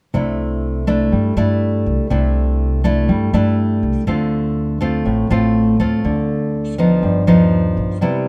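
A nylon-string guitar sits up front in this breezy, sophisticated bossa nova, fingerpicked with a full-bodied, deep classical tone and the warm character of old strings. It carries the accompaniment across the fragment in C major at 122 BPM in a straight 4/4, moving from C69 to Dm7 at 4.1 seconds and arriving on G7b13 at 7.0 seconds. Beneath it, an upright bass plays pizzicato on gut strings, its sound dark, woody and thumpy, sitting lower in the mix than the guitar. The bass drops out at 7.9 seconds, just before the guitar finishes at 8.3 seconds. A moderate large-studio reverb gives the pair a sense of space, and the passage is cut from a longer piece.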